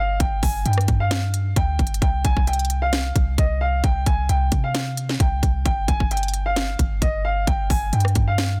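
A dense, heavily limited, nearly dry mix carries this eerie, hard-hitting half-time trap excerpt in C minor at 132 BPM, where a boomy sine-toned 808 bass and an up-front electronic kit with a hard-clipped kick, sharp snare, rim click and crisp hi-hats drive beneath a boxy, short-sustained concert grand piano melody touched with tape echo, over G5 and C5 chords, the drums entering at 0.2 seconds.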